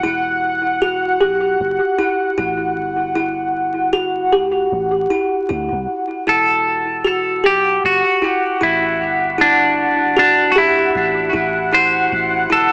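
A smoky, dark trip hop excerpt at 77 BPM with a swung 16th feel opens on a deep, moody ambient pad of detuned, wave-folded chords with chorus, reverb and 12-bit sampler grit, beside a delicate, tinkling music box playing arpeggios through analog delay and a soft, round 808-style bass, before a bright, clean semi-hollow electric guitar melody with tape echo enters up front at 6.3 seconds over Em, F#m7, G5 and Am chords, all wrapped in spring reverb, heavy echo, vinyl crackle and a small-speaker sound.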